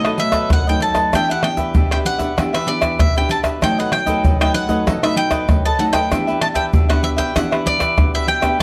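Samba and choro in E minor at 96 BPM, this short, lively and festive clip is cut from a longer piece and moves in a straight 4/4. A bright bowl-back mandolin carries the melody up front, its picked double strings ringing between D5 and A5 with a touch of plate reverb. Beneath it, a crisp cavaquinho picks out accompaniment in the middle register while a small, fingerpicked nylon-string guitar fills in the lower range from F#2 to G4, the two sharing a warm acoustic tone. The percussion of egg shaker, pandeiro, tamborim and a tight surdo sits close and up front, played with hard hands, and it is the loudest part of the mix. All parts play throughout the 8.6 seconds, with the harmony alternating between B7 and Em7 inside a wet studio reverb.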